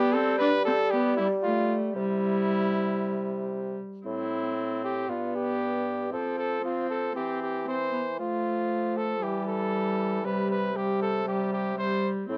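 A straight 4/4 pulse at 116 BPM drives this short, solemn and rustic renaissance-style consort dance, cut from a longer piece and tuned slightly low with A4 at 439 Hz. A present, up-front cornet carries the melody between E4 and C5 from start to finish, and a single bowed viola plays a second line beneath it, rich and reedy with a gut-string period tone, light vibrato and a distant quality. A solo bassoon, warm and roomy with light vibrato, holds the bass from G2 to G3, set a little lower in level than the other two parts. The harmony opens on Gadd9 and C before a new section begins at 4.1 s on A minor, then moves through G, F5, C/E, F and E minor to settle on a bare C5 at 10.2 s. Light reverb and a dark production give the trio a mellow, old-world atmosphere.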